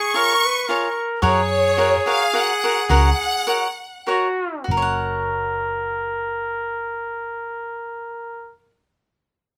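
This mariachi-flavored Mexican folk excerpt in F# major has a proud, festive mood, moving in a swung 3/4 at roughly 97-111 BPM and slowing down between 1.2 and 4.7 seconds. A lush bowed violin section carries the melody high and up front with focused vibrato, then stops at 4.0 seconds. Beneath it, a solo trumpet in a vintage, classical style plays a second line through the whole passage. A crisp, picked acoustic cavaquinho supplies bright accompaniment, while a dark, round hollow-body electric bass comes in at 1.2 seconds with an amped tone. Light reverb surrounds the players as the opening section gives way to a second one at 4.7 seconds.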